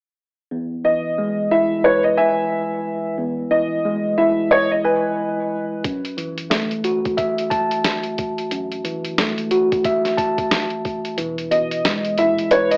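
Nostalgic and confident, this boom-bap hip-hop excerpt moves at 90 BPM in E major with a swung 16th feel, opening on a worn, slightly out-of-tune tine electric piano, lightly overdriven and run through cassette tape and plate reverb, while a woody, slightly detuned upright piano carries the melody from 0.8 seconds. At 5.8 seconds a gritty, pitched-down sampler-style drum kit arrives with a thumpy kick and medium-tuned snare, and the chords move from Emaj7 to F#m7 before returning to Emaj7 at 11.2 seconds, where the kick drops out and a deep sine-and-triangle sub bass sits in the background. The whole mix has a homemade cassette and AM radio character in a moderate studio reverb.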